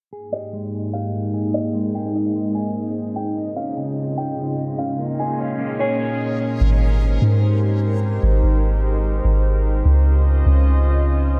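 A half-time hip hop pulse at 148 BPM in 4/4 carries this dreamy, floating passage in Ab major, cut from a longer piece. A warbling, nostalgic tape-like pad holds sustained chords throughout, while a clean, fingered electric guitar plays arpeggios, a muted felt upright piano carries a mellow, intimate melody, and from 1.6 s a reversed, detuned granular texture shimmers brightly above, with a filter sweep running through this opening stretch. At 6.6 s the guitar, piano and texture drop out, and a deep, round 808-style bass enters up front beneath the pad.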